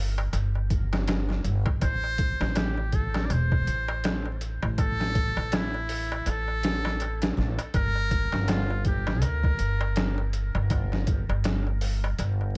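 Melancholic and dark, this trip hop excerpt at 81 BPM with a swung 16th feel sets a woody pizzicato upright bass and a muffled, pitched-down, overdriven sampler-style kit with thumpy kick up front, adds a crisp metal-shell darbuka played with hard hands, and from 1.8 seconds brings in a buzzy, close-miked muted trumpet solo with light vibrato, scooped notes and dub echo over Am and Gm, all beneath a layer of vinyl crackle.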